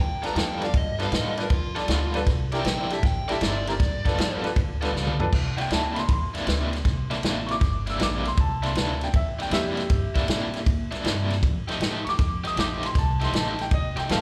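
Electric blues shuffle at 157 BPM in C mixolydian, gritty and soulful, heard as a live club gig through the venue's PA with club reverb, where a dark, overdriven lead guitar with slapback echo sings a melody until 4.4 s, a thumpy pizzicato upright bass and a brilliant upright piano with slapback echo carry the harmony from G9 through C9 to F9, a crunchy overdriven guitar plays a picked riff colored by tremolo and slapback echo, and an up-front vintage drum kit with a punchy kick and rolled-off top drives the swing and adds a fill at 4.9 s.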